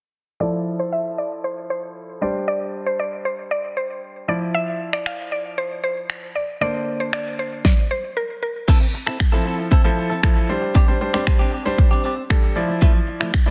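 A punchy, layered electronic pop drum kit sits up front from 4.9 seconds, its fat, softly clipped snare, crash cymbal and finger snaps driving this euphoric, summery dance-pop excerpt at 116 BPM in a straight 4/4 feel in F major. Before the drums, a clear concert grand piano with natural tone and deep bass carries the accompaniment, pumping with sidechain and shaded by a low-pass filter. Above it, a woody, round, mallet-like FM synth pluck with a noise layer and fast attack plays the melody through chorus and delay until 8.5 seconds, while a filter sweep runs through the opening section. A clean, fingered electric guitar, compressed and bathed in lush chorus, enters with a riff at 8.7 seconds as the second section begins. The harmony circles Fmaj7, Csus2, Dmadd9 and Bbadd9/D under light digital reverb, all pressed into a dense, heavily limited modern master.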